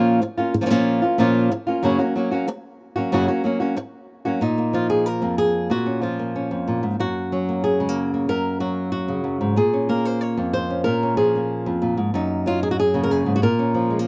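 A lone acoustic flamenco guitar, fingerpicked and up front, carries this passionate, fiery excerpt from a longer piece, its fresh strings ringing with a warm tone across a range from low bass notes to bright upper melody. The harmony swings back and forth between two chords, first in a short opening passage and then in a longer second section from 4.4 seconds. The sound is dry and close, set in a small room in the manner of a 1970s studio recording.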